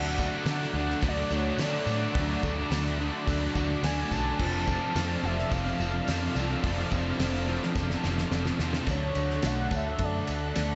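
A hazy, reverb-soaked wash with a dark, rolled-off top opens this wistful shoegaze and dream pop excerpt at 107 BPM, where three background electric guitars (a biting overdriven one with reverse reverb that drops out at 8.9 seconds, a double-tracked crunchy one with ensemble chorus, and a thick fuzz guitar with distortion and analog chorus) churn out the riff beneath a silky, detuned analog string pad. Meanwhile, a reedy, woody FM lead carries the melody with chorus, tremolo, delay, vibrato and portamento, while a quiet lo-fi guitar through a small old amp picks arpeggios and a round, foam-muted vintage bass punches up front. A loose indie kit with a fat snare, punchy kick and dark cymbals, joined by a faint jingly tambourine, plays a fill from 7.8 seconds as the harmony moves from D through F6 to a closing Dmaj7.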